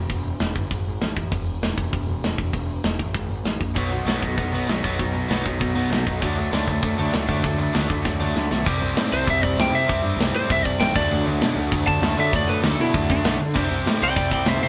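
This rowdy, rebellious punk rock excerpt at 196 BPM opens with a fuzzy, punchy picked bass and a tight, up-front acoustic drum kit of kick, snare, hi-hat and crash. Around 3.7 seconds two bright, overdriven, double-tracked electric guitars join with riffs over chords moving from B to D, one of them sitting further back in the mix. After a drum fill, a slightly broken-up, compressed lead guitar takes a solo from 9.1 seconds over C and D changes, in the sound of a band playing live in one room with light reverb.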